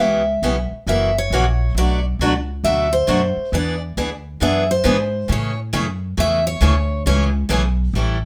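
Acoustic string swing in A major at 136 BPM, this swinging, playful excerpt cut from a longer piece features a bright, full-bodied picked dreadnought guitar carrying the melody up front with finger squeak until 7.2 s, over a boxy parlour guitar accompaniment and a woody, dark pizzicato upright bass, all in light reverb as the chords move from C#m7b5 through F#7, Bm7 and E7 to a closing Amaj7.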